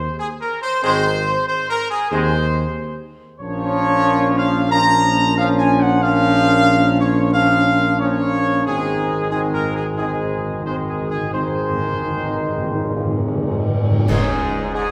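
A wet recital-hall reverb surrounds this solemn, majestic classical fanfare at 91 BPM, cut from a longer piece, with a warm trumpet section carrying the melody up front with light vibrato and a smooth top, over a dark tuba bass and sustained chords from a mellow French horn section in the background and a clear, vintage-toned trombone section. The harmony moves from Ab to Bbm and back to Ab, and at 8.7 seconds round, soft-malleted timpani on calf heads enter with a fill. A bright cymbal swell, clash cymbals and concert bass drum join at 11.3 seconds before a band accent lands on Db5 at 14.1 seconds.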